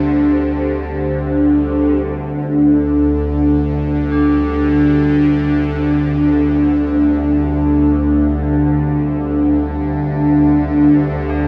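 Ominous from the start, this dark ambient drone in D minor drifts in free time over a single D minor chord. A tense, string-like bowed drone with phaser and vibrato sits up front beside a deep, moody analog pad thickened by chorus, and from 4.1 s solemn, metallic tubular bells fade in from the background through a diffuse delay, the whole cut from a longer piece and bathed in a huge, wet reverb.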